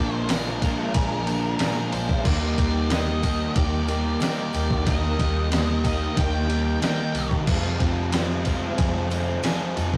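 The rhythm, starting at 0.3 seconds, is a straight 4/4 pulse from a gated 80s digital drum machine, sitting up front with a thumpy kick, gated reverb on the snare, and crash and ride cymbals, alongside a very quiet, jingly tambourine. This short excerpt of hazy, dreamy shoegaze and dream pop rests on a round, punchy, foam-muted fingered electric bass, while two crunchy overdriven guitars play riffs in the background and a double-tracked, compressed distorted guitar adds a very quiet riff of its own. A twangy, scooped guitar at the edge of break-up picks arpeggios very quietly underneath. A dark octave-fuzz lead guitar carries the melody until 7.3 seconds, and a very quiet string machine set to violas holds sustained chords with a soft attack, long release and ensemble chorus. The harmony moves from Bb7 to Ebmaj7 at 2.2 seconds and on to Fm7 at 7.5 seconds. The whole mix has a rough rehearsal-room character with tube saturation and a wet studio reverb.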